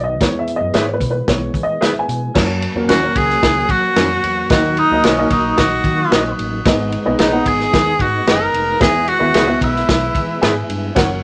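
A straight 4/4 groove at 112 BPM drives this joyful, uplifting 1960s-style soul excerpt, where a dark, woody upright piano opens with a solo as fingered electric bass and a round tonewheel organ with fast rotary speaker and chorus vibrato sound beneath it. A tight, roomy drum kit and then mellow clean guitar stabs join in. At 2.9 seconds a clear, close-miked tenor saxophone takes the melody over a soft, bell-like glockenspiel line played with rubber mallets, moving through E, F#, D#m and G#m in a wet studio ambience until a closing piano fill at 10.2 seconds.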